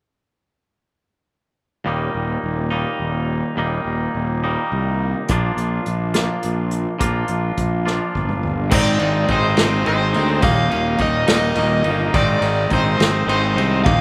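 A dry cut from a longer jangly, upbeat indie rock piece in Eb major at 70 BPM in 6/8, it opens at 1.8 s with a twangy, clean, compressed electric guitar riff carrying slapback echo over a growly, fuzz-overdriven fingered bass, a distant, roomy acoustic drum kit with dark cymbals and bundle sticks enters at 5.3 s and plays a fill into 8.7 s, where two overdriven semi-hollow guitars join, one playing a tremolo-treated melody in the background and the other a hollow-body riff.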